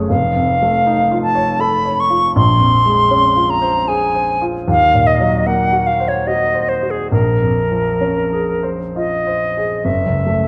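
Wistful and mysterious, this short excerpt of an impressionist classical duo moves in a rubato 3/4 in Bb minor, drifting between 61 and 81 BPM. A silver concert flute carries the melody with a pure, metallic tone, vibrato and soft attacks, sitting up front over a baby grand piano whose natural, warm accompaniment reaches down to a deep bass. A wet scoring-stage reverb bathes the pair in a dark, warm production as harmonies such as Faug7, Bbm9 and Ebm6 glide by, ending on an F#m7 at 9.8 seconds.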